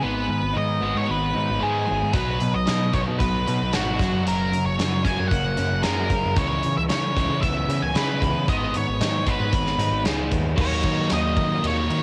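A dark, up-front octave-fuzz lead guitar sings a wistful, carefree indie rock melody at 114 BPM over a biting overdriven guitar riff tucked in the background, a crunchy guitar riff with subtle chorus and tape echo, and a growling, round picked bass, before a big acoustic rock drum kit with a tight kick and medium-tuned snare joins at 2.1 seconds, moving through chords from G#m to D#m7 in a home cassette recording with light small-room reverb, cut from a longer piece.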